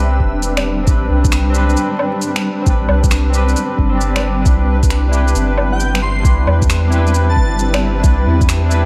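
Nocturnal and wistful, this short future garage fragment moves at 134 BPM in A minor, its 16ths swung, drifting from a rootless Am11 to Cmaj7 at 4.5 seconds over a bed of vinyl crackle with light reverb and digital ambience. A bright, barky tine electric piano carries the accompaniment through a combo amp, coloured by analog chorus and diffuse ambient delay, while a granular cloud pad holds blurred, detuned chords that evolve beneath it with a slow attack and long release. Both carry sidechain pumping, as does the soft dub sub bass, a deep, round tone sitting up front from E1 to E2. The electronic kick is soft yet overdriven, joined by an overdriven shaker, finger snaps and woodblock in a small room. At 5.7 seconds an airy, dreamy lead appears in the background, a detuned unison voice with a noise layer and moving notch, touching G5 to C6 under chorus and delay until 7.7 seconds.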